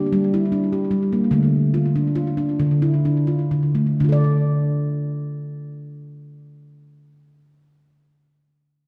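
A solo handpan opens this brief, meditative world clip, its ringing nitrided-steel tones struck with the fingertips and heard close-miked, full and up front. It plays gentle arpeggios in D minor, spanning D3 to D5, and moves from a G minor chord to D minor at 1.3 seconds. The pulse is a slow, straight 6/8 at roughly 40-52 BPM counted in dotted quarters, and the tempo eases back over the first 4.0 seconds before a new passage begins. A slapback echo colours the handpan. The whole clip sits in a wet echo-chamber reverb with a long 2.6-second tail, giving the unhurried playing a calm, spacious feel.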